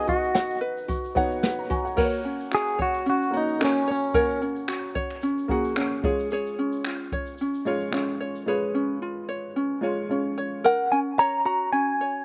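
Acoustic pop with a heartfelt, sunny mood and a light swing, where a bright, twangy clean electric guitar carries the melody up front before dropping out at 4.4 seconds and returning at 10.7 seconds, over a fingerpicked ukulele that plays throughout, a woody, slightly detuned upright piano until 10.7 seconds, and a brushed jazz kit with finger snaps, shaker and a boomy kick until 8.5 seconds, with slapback echo on the guitar, ukulele and piano and a dry, open-air sound.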